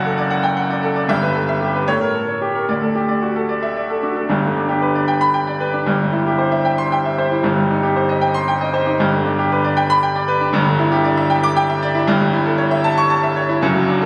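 A clear, up-front concert grand piano opens this brilliant, heroic passage from a classical virtuoso piano study, played alone in a rubato 6/8 with deep bass and an open tone, moving into a new section at 4.3 s, all heard through a phone recording in the room with wet recital hall reverb.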